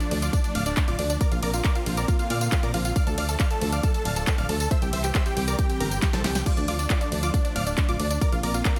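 A huge, detuned supersaw lead carries the euphoric melody of this soaring uplifting trance passage at 137 BPM in D minor, joined from the start by a warm analog pluck with chorus and delay, an airy phaser-tinged unison pad, and a house kit of punchy snare, handclaps, hats, ride, tambourine and crash. A punchy, round FM bass enters at 0.1 seconds and an up-front layered kick at 0.3 seconds, with the lead, pluck, pad and bass all pumping against it. A drum fill lands at 6.0 seconds as the chords move through Dm, Bbadd9 and C under light reverb.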